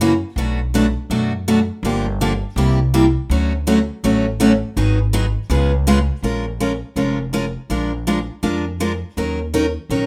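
Acoustic string swing in the jazz manouche style, this fast, swinging passage cut from a longer piece moves at 164 BPM with a virtuosic edge, settling into Bb minor at 6.2 s as the harmony turns from Bm7 and Dmaj7 toward Bbm7 and Ebm7. A bright, up-front picked steel-string acoustic guitar with fresh strings carries the accompaniment throughout, while a pizzicato upright bass on gut strings sits lower in the mix with a woody, thumpy tone. The guitar and bass sit in a wet studio reverb with a rough home-demo quality.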